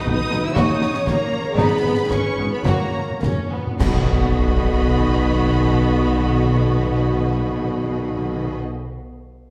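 This short cut from a heroic adventure film score opens with both violin sections, the violas, harp and timpani together. The top violins carry a lush, soaring melody high above a second violin line that glides with expressive portamento. Violas, cellos and double basses fill in smooth, even support in the background, joined by a mellow solo tuba at the bottom. A very quiet ringing harp plays arpeggios, and soft-mallet timpani add round, distant thunder. In straight 4/4 in B major, with a tempo somewhere between 101 and 124 BPM, the opening stretch slows down through B, D#m7, G#m and F#, with a timpani fill closing it out. The whole band lands a triumphant accent on B at 3.8 seconds, with dark cymbals, snare and bass drum giving way to a bright cymbal clash, all heard from further back in a reverberant recital hall.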